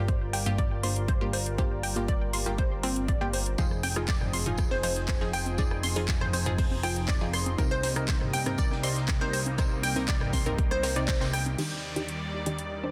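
A punchy electronic kick sits up front in this emotional, expansive progressive house excerpt in C minor at 120 BPM, driving a straight 4/4 groove beneath a house kit of metallic hi-hats, handclaps and crash cymbal, with sidechain pumping on the hats and cymbals. A fat, saturated analog bass holds the low end while a lush, detuned unison pad sustains chords with chorus and pumping, moving from Gm7 to Fm7 at 3.6 seconds, then Cm7 and finally Ebmaj7. Above them, a glassy, crystalline wavetable pluck plays bright arpeggios with chorus and delay, and a punchy unison pluck adds delayed stabs, both pumping with the sidechain. From 3.6 seconds, a gritty, dark garage kit of hi-hat, snare and tambourine sits in the background, joined at 3.7 seconds by a very quiet analog drum machine with congas, rim clicks and toms. A filter sweep runs through the synth pad and a band accent lands at 11.1 seconds, before a downlifter closes the passage over the final Ebmaj7, all in light reverb and a dense, heavily limited modern master.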